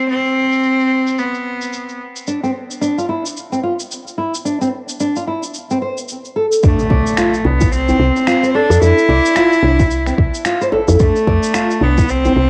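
A swung 110 BPM groove of gritty, compressed electronic cabasa and finger snaps runs through this hypnotic organic downtempo excerpt in D dorian, where a clear, close cello with light vibrato and airy bow sings briefly at the start, a dark, fingerpicked nylon-string guitar with finger squeak arpeggiates a Dm7 from 2.3 seconds, and at 6.6 seconds the cello returns alongside a round, woody FM bass with sidechain pumping, a soft, tape-warm electronic kick drum and a background electronic impact, while a medium-tuned djembe joins further back in a light reverb and digital ambience with a homemade cassette character.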